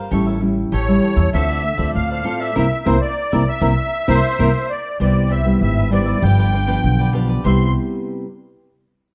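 A reedy musette accordion carries the melody in this lively, joyful samba excerpt, entering at 0.7 s with a shimmering voice in the upper register. Up front, a woody, thumpy upright bass plays pizzicato on steel strings, while a thumb-plucked nylon-string guitar gives classical-style accompaniment and a bright, crisp cavaquinho adds a picked accompaniment on top. The tune moves at 98 BPM in a straight 4/4, passing through A7, Dm7 and C7 before settling into C major with a Cmaj7 at 5.0 s. The band hits a shared accent from 2.6 to 5.0 s. The parts sit in a moderate large-studio reverb with a dark production, and the guitar rings on alone until 8.3 s after the others stop at 7.7 s.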